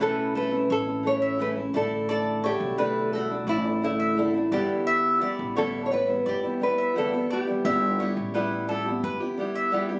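Carefree and easy-going, this short acoustic pop clip sets a boxy, up-front fingerpicked nylon-string guitar melody over a fingerpicked dreadnought steel-string guitar, with bright, picked mandolin arpeggios on double strings and a dark, growly pizzicato upright bass, heard through a phone recording in a room with light club reverb.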